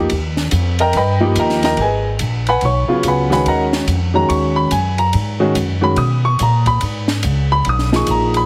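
Heavily compressed into a squeezed, radio-like sound with a touch of light reverb, this short cut from a longer piece of modal jazz feels searching and spiritual. A grand piano carries the accompaniment from the start, its tone smooth and vintage with long sustain, sitting up front. Beside it, a pizzicato upright bass with steel strings holds the bass line, woody and close. A compact cocktail drum kit enters at 0.1 seconds with hi-hat, kick, ride and snare, sounding dry, with dark cymbals, a high-tuned snare and a punchy kick, set lower than the piano and bass. The swung groove moves in four, and the harmony shifts from an Eb chord to G#m9 at 1.8 seconds, where the opening section starts over.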